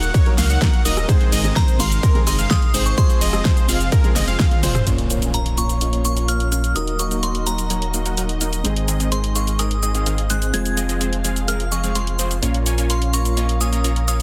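Festival progressive house with an anthemic, euphoric lift, cut from a longer piece and opening mid-drop. A punchy, up-front electronic kick and a layered pop drum kit, with its fat, overdriven snare, hi-hat, ride, cabasa, rim clicks and toms, drive the groove over a deep, thick sub bass that pumps against the beat. A bright, detuned supersaw stab riff and a bold sawtooth unison lead playing vibrato-tinged arpeggios share the pumping, while a crystalline FM bell melody rings out with chorus and tape echo. Far back in the mix, a lush, woody string section sustains chords and a mellow baby grand piano accompanies with long sustain. A drum fill and band accent close the drop; the kick stops at 4.5 seconds and the lead at 4.8, then at 4.9 seconds a background impact hits as a filter sweep moves across the supersaw for the rest of the passage. The dry, dense master is heavily limited and modern.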